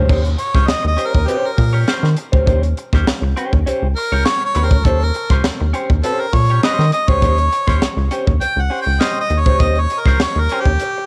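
Funky and playful, this short 101 BPM funk cut in Eb mixolydian over an Eb6 chord puts a clear harmonica up front, soloing with light vibrato, scooped notes and tape echo, over a rubbery square-wave bass, a crisp fusion kit with a high-tuned snare and dark cymbals, and a slightly broken-up electric guitar comping through wah and cassette tape, all captured as a home recording on cassette.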